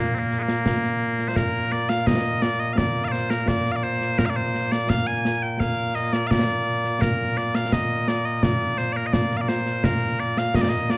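Worn, warbling old cassette tape colors this short excerpt of Scottish traditional pipe music, with a wavering pitch drift and a moderate recital hall reverb around it. The mood is ceremonial and stirring, set in a straight 2/4 feel. Loud, piercing bagpipes carry the melody from the very start, a continuous, up-front voice spanning Bb2 to Ab5. Concert snare drum and concert bass drum join at 0.3 seconds, sounding acoustic, close and dry, with bright cymbals adding sparkle. After a brief opening phrase, the same melodic section returns at 1.4 seconds and runs to the cut at 11.0 seconds.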